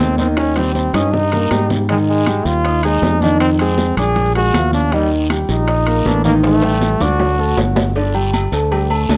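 A straight 4/4 salsa groove at 158 BPM drives this fiery, passionate latin excerpt, with ringing metal-shell timbales and agogo bells, high-tuned congas tucked in the background, a raspy guiro and very quiet, low-tuned bongos and cowbell filling out the percussion, plus drum fills at 0.4 and 6.4 seconds. Up front, a growly fingered electric bass anchors the harmony while a dark, mellow concert grand piano accompanies beneath a punchy solo trombone that sings with vibrato and plate reverb before stopping at 7.6 seconds. The chords move from Eb through Ab5 and Bb7 to a tense Ebmaj7#11/A and D before settling on Gsus2, all captured with close, detailed microphones and light reverb.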